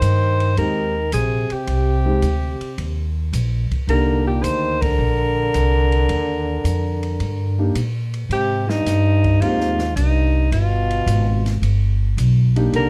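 Smoky and cool, this 12.9-second cut of small-group swing and bop in C minor moves at 108 BPM with a swung feel, as a breathy, subtone alto saxophone with scooped notes and plate reverb carries the melody up front over a punchy trombone second line with vibrato, woody pizzicato upright bass, a concert grand piano entering at 0.6 seconds with deep bass, and an airy drum kit with dark cymbals and a boomy kick, the band striking an accent at 4.7 seconds through a dark, dry production moving from Fm9 to Cm9, Abmaj7 and G7.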